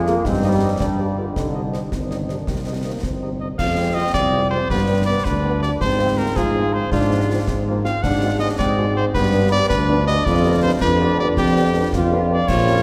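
In a straight 6/8 at 108 dotted-quarter beats per minute, this stern, martial military-style march for wind band, cut from a longer piece and tuned to A4 = 435 Hz, puts a warm cornet with light vibrato up front on the melody over a tight trombone section holding smooth-topped sustained chords, a mellow tuba bass up front, a distant, very quiet French horn section accompanying, close, dry concert snare drum and bass drum with dark clash cymbals, and a clear, soft-attacked euphonium second line in the background that drops out at 3.5 s, heard within a wet church reverb as the harmony moves from Cm/G and G7 through Fm and Ab7 to G7/F.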